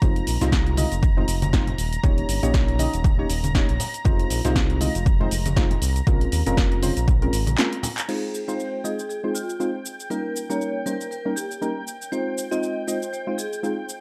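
Full-bodied, nasal chord stabs sit up front in this dark, hypnotic deep house cut at 119 BPM in F minor, coloured by chorus, cassette tape wear, digital delay and sidechain pumping over a silky, detuned analog string pad and a smooth sawtooth-and-triangle synth bass. An overdriven, punchy kick and an analog drum machine with snare, handclaps, hi-hat, cabasa and crash cymbal carry a swung feel, while compressed congas played with soft hands sit in the background; the kick, bass and congas drop out around a brief break and drum fill at 7.6 seconds. From 8.1 seconds a metallic, ringing vibraphone with medium mallets and fast motor vibrato takes the melody, roughened by 12-bit sampler grit and delay, as the chords move through Fm7 and Eb7 under light digital reverb.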